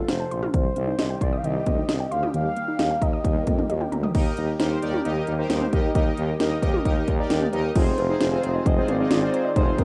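A straight 4/4 house drum kit with a punchy kick, cracking snare, metallic hats and a fill at 3.7 seconds drives this melancholic, driving synth-pop excerpt at 133 BPM, as a clear tuba with light vibrato carries the bass up front, a lush, detuned unison pad sustains very quietly beneath a soft, dark pluck arpeggio and a mellow horn-like lead with chorus, phaser and tape echo that drops out and returns at 7.8 seconds, while a fat sawtooth analog synth brass enters at 4.1 seconds, in a rough cassette home-demo mix with moderate plate reverb.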